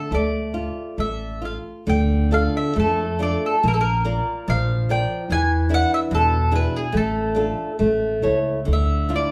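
A rubato 2/4 pulse, drifting between 66 and 74 BPM, carries this passionate, longing fado-style ballad in D harmonic minor, cut from a longer piece. Up front, a mandolin sings the melody with a round, picked double-string tone, while a fingerpicked flamenco guitar with fresh strings accompanies and a woody, thumpy pizzicato upright bass on gut strings enters at 0.1 s. The harmony moves from Dm through Bb and E7 before settling on Dmadd9 at 8.7 s, all heard from further back in a room with wet studio reverb and some lossy compression artefacts.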